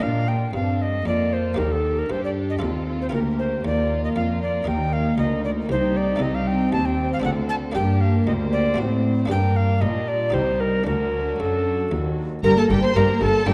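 An airy, chiffy alto recorder leads up front over bowed chamber strings, a muted, lute-like harpsichord and a smooth, even cello bass in this stormy baroque-style concerto excerpt at 116 BPM in 3/4, moving from Bb major into G minor at 6.2 s under a dark, reverberant scoring-stage sound, with a bowed double bass section joining on G1 at 12.4 s.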